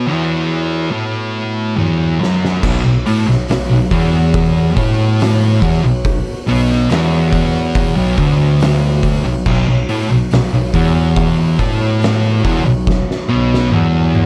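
A dark, lightly reverberant production frames this brooding, ominous stoner and doom metal piece, where two thick fuzz guitars, one up front and one in the background, play a distorted, picked riff over soft, flute-like tonewheel organ chords turning through a slow rotary speaker, before an oversized, low-tuned drum kit with a fat snare and punchy kick enters with a fill at 1.8 seconds and a smooth, mellow bass clarinet with overdrive takes up the bass line from 2.6 seconds.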